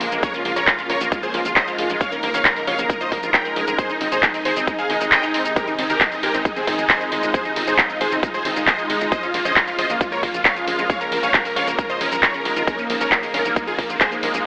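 Soaring and bittersweet, this uplifting trance excerpt at 135 BPM in Bb minor is led by a huge, euphoric detuned supersaw lead with dub echo and sidechain pumping, over a lush, thick unison pad with chorus, a squelchy, resonant acid bass playing arpeggios in the background, a tight, punchy sequencer bass, a punchy layered electronic kick entering at 0.2 s, and an up-front, tape-warm techno kit of handclaps, warm hi-hats, ride cymbal and shaker, all heard through a lush hall reverb and an AM radio sound as the chords move from Bbm7 to Ab and back.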